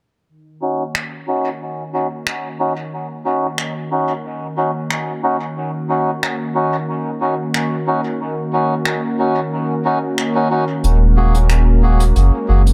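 A straight 4/4 pulse at 91 BPM is marked by a jazz brush drum kit playing finger snaps and hi-hat from 0.9 seconds, set in an acoustic studio room and trailed by dub echo. This hazy, meditative ambient dub in Eb minor opens at 0.3 seconds with a warm analog pad holding sustained chords, its detuned sawtooth tone smooth and chorused, roughened by vintage 12-bit sampler grit as it fades in over Ebm7. A reedy, breathy melodica sits up front with stabs from 0.6 seconds, its nasal, band-limited sound passed through a low-pass filter sweep and dub echo. At 10.8 seconds the harmony moves to Gbadd9/Eb and a soft dub sub bass enters, deep and round with a mellow, fast-attack sustain placed up front. The echo-heavy mix carries light, small room reverb, and this cut from a longer piece ends at 12.7 seconds.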